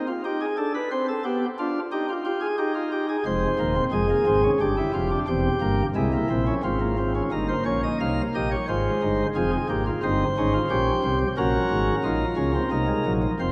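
A long, wet church reverb of 3.1 seconds surrounds a solo pipe organ, giving this short passage cut from a longer work a cavernous, solemn air. It is a classical, baroque-style four-part fugue in 3/4 at 89 BPM with a straight, measured feel, and its mood is serious throughout. The organ speaks through sparkling flute stops in a baroque voicing, sitting up front with a light, bright character while its parts span from deep Eb1 notes up to F5. The harmony starts in C minor, moving through chords such as G/B, Fm and C/E. After a new section begins at 7.3 seconds, it drifts into darker, more distant colours like Dbmaj7/F, Gdim/Bb and Gb before settling on Cm7b5 at 12.7 seconds.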